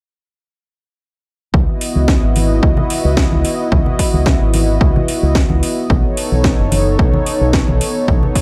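Nu-disco with a sensual, groovy mood, this short cut from a longer piece rides a straight pulse, with the harmony moving from C#m11 to B9 at 5.9 seconds. A punchy, overdriven electronic kick starts at 1.5 seconds alongside a warm fingered electric bass shaped by an envelope filter, and the bass pumps against the kick through sidechain compression. Bright, close congas played with soft hands sit in the background, and at 1.8 seconds a layered house kit adds a cracking snare and metallic hi-hats, its drive and large-room character matching the kick. Above them, an up-front analog pad built from detuned sawtooth and triangle tones with a sub octave swells in slowly and sustains, mellow and smooth, thickened by chorus and tape echo. The mix is dry overall, keeping the grooves tight and present.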